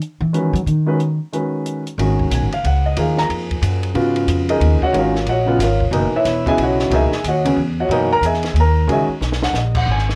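A swinging 3/4 pulse at 183 BPM drives this cool, spiritual modal jazz excerpt, its eighth notes carrying a gentle lilt. A compact cocktail drum kit keeps time with dark cymbals, a high-tuned snare and a punchy kick, sounding dry and natural while sitting lower in the balance, and it slips in a short fill at 9.2 seconds. The upright bass is plucked, woody and warm, strung with steel strings, and stands up front, opening with a brief solo spot in its first 2 seconds. A concert grand piano joins at 0.3 seconds, intimate and close with audible action noise and a deep low end, voicing suspended thirteenth chords that move between F#13sus4 and G#13sus4. The whole recording rests in light reverb and carries the worn, warbling character of old cassette tape, its pitch drifting gently.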